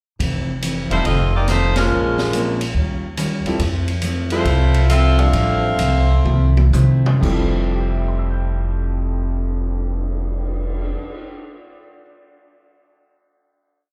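Big band swing jazz in F major at 119-141 BPM, this energetic, brassy whole piece has a tight, up-front saxophone section playing a motif-based melody in four-part block voicing over a woody, thumpy two-feel upright bass, a bright, brilliant upright piano comping with syncopated rootless voicings, a dark, full-bodied acoustic guitar strumming jazz chord shapes in the background, and a punchy swinging drum kit riding the cymbal, with a band accent at 1.7 seconds, a slowdown and drum fill leading to a final chord at 7.2 seconds, all heard live through a club PA.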